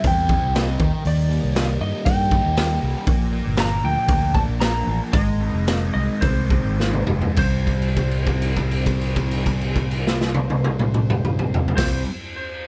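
An electric slide guitar carries the melody throughout this hypnotic, kaleidoscopic psychedelic rock excerpt, its fingerpicked, compressed tone slightly broken-up and trailed by tape echo. Beneath it, a double-tracked fuzz guitar plays a picked, distorted riff colored by a phaser, while a dark, round fingered electric bass anchors the low end. A raw garage drum kit sits up front with a punchy kick, medium-tuned snare, dark cymbals, toms and hi-hat, its gritty, saturated sound rolled off at the top and pumping in a small room. Very quiet in the background, a phased string machine holds swirling, sawtooth chords with a slow attack and ensemble chorus. In straight 4/4 at roughly 101-119 BPM, the music moves through C, Eb, Bb and Abadd9 as the tempo slows from 3.1 seconds, and a drum fill leads into a new section that returns to C, where a long note is held from 7.4 seconds. The mix is dry, with little reverb, and the tuning sits at A4 = 438 Hz.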